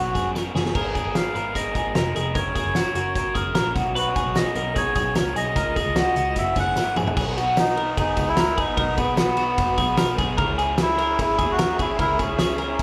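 Heard through a club PA with the venue's ambience and moderate room reverb, this jangly indie pop excerpt in F# major moves at a straight 149 BPM with a bright, youthful mood. A reedy, nasal melodica carries the tune over twangy twelve-string electric guitar arpeggios colored by phaser and delay, a lo-fi overdriven garage guitar and a round, foam-muted picked bass. A loose indie drum kit with a fat snare and dark cymbals comes in at 0.2 seconds alongside a jingly tambourine in the background. At 7.2 seconds, after a drum fill, a very quiet small flute group adds airy sustained chords with vibrato.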